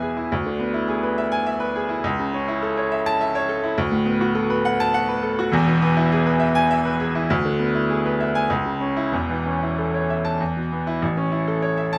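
Flowing in a lilting three-beat metre with a free, elastic rubato, this heroic and sparkling classical passage has the character of a virtuoso piano study. A lone baby grand carries everything from 0.0 to 12.0 s, its brilliant, open tone sitting up front with a long sustain that lets each sonority ring. The writing spans the keyboard from a deep E1 up to A5, so the bass has real weight beneath the bright upper register. The harmony moves through a dominant seventh over a D bass, a C-sharp minor chord and a bare E fifth before arriving home on A at 11.0 s. A moderate, spacious studio reverb surrounds the instrument, giving this excerpt from a longer piece a grand, resonant setting.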